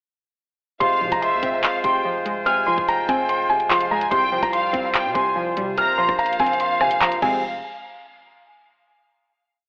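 A clear, polished concert grand piano carries a looping high melody up front through a low-pass filter and digital delay, while a lush, distant violin section adds a sparse, vibrato-rich counter-melody with its own delay, a glassy wavetable pluck repeats a rising eighth-note arpeggio under chorus and filter sweep, and a reedy accordion holds sustained chords. This is a dark, ominous drill hip hop piece at 145 BPM in a half-time feel and F minor, driven by an electronic drum kit with a knocking kick, skipping hi-hats with fast rolls, handclaps, rim clicks and crash cymbal, while a deep, mellow 808-style bass sits in the background with long sub notes that follow the kick and slide in pitch. The hook moves from Fm through Csus4 and Bbsus2 back to Fm, ending on a final hit from 7.4 seconds, all colored by light reverb and a worn, warbling cassette-tape sound with a telephone-like tone.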